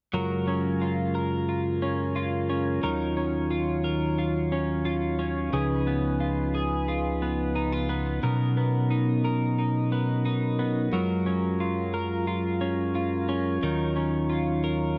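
A gritty, dry hardware recording sits inside a lush hall reverb, framing this floating, dreamy dream pop passage cut from a longer piece. Up front from 0.1 to 15.0 seconds, a soft, flute-like tonewheel organ holds sustained chords with an audible key click through a slow rotary speaker. Beside it, a warm, clean, compressed twelve-string electric guitar picks arpeggios through subtle chorus and tape echo over a cycle of F#maj7, D#m9, C#7 and Bmaj7.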